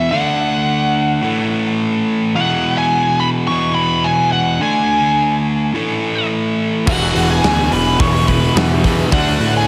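Hard rock with a swaggering, energetic feel, this short excerpt moves at 107 BPM in a straight 4/4, set in E mixolydian and tuned slightly sharp to A4 = 443 Hz. It opens with two guitars together: a smooth overdriven lead carrying the melody high up, and a dark, up-front overdriven electric guitar playing the riff in the low register, both touched with slapback echo. The harmony moves through D, A5, E5 and D5. At 6.9 s the band kicks in: a big rock drum kit with a punchy kick, medium-tuned snare, hi-hat and crash, a fuzz-laden picked bass that is both warm and punchy, a very quiet octave-fuzz lead guitar adding a second line, and two very quiet distorted rhythm guitars also playing the riff, one bright and the other double-tracked and compressed. A moderate scoring-stage reverb gives the whole a big arena sound.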